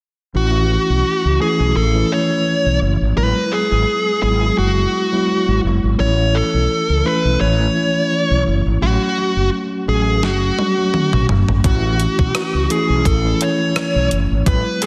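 A dark, smooth lead guitar carries the melody up front, its overdriven, picked tone trailed by tape echo as it moves between F#4 and C#5 in this romantic, nostalgic slice of 1980s-style pop. Underneath, a mellow tine electric piano supplies clean accompaniment heard through its built-in speakers, while a bright fretless electric bass sits up front with analog chorus. The tempo is a relaxed 85 BPM in 4/4 with a light swing on the sixteenths, and the harmony moves through A, Eadd9, A and F#m in A major. At 10.2 seconds a sampler-style digital drum machine enters with a fill, bringing a thumpy kick, a fat overdriven snare, hi-hat, rim click and toms before the chords return to A at 11.6 seconds. A lush hall reverb soaks the mix in a dreamy haze, and the piece is cut from a longer work.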